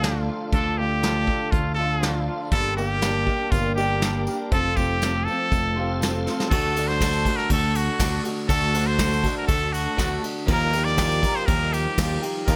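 A nasal, straight-muted trumpet carries the melody up front over a brushed drum kit, punchy fingered bass, a dark, woody archtop guitar, a slightly broken-up electric guitar riff with ensemble chorus and a very quiet, piping tonewheel organ on slow rotary, with a bright concert grand piano entering at 2.5 seconds and a jingly tambourine at 2.8, while the organ drops out at 6.5 seconds after a drum fill, giving this reflective, dusty folk rock and heartland rock fragment a light reverb.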